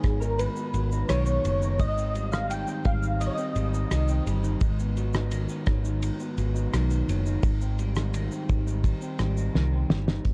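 A dark, warm studio sound frames this laid-back, sunny bedroom-pop excerpt in straight 4/4, drifting through lush major-seventh, thirteenth and sixth chords. Soft, mellow electric-piano-like synth keys with an ensemble chorus carry the melody until 4.2 s, while a slightly broken-up electric guitar through a small old amp, touched with subtle chorus, vibrato and a low-pass filter, supplies the accompaniment. Up front, a round, punchy, foam-muted bass and a cloth-damped, thuddy drum kit with a fat snare and dark cymbals anchor the track, and the drums close on a fill at 9.5 s.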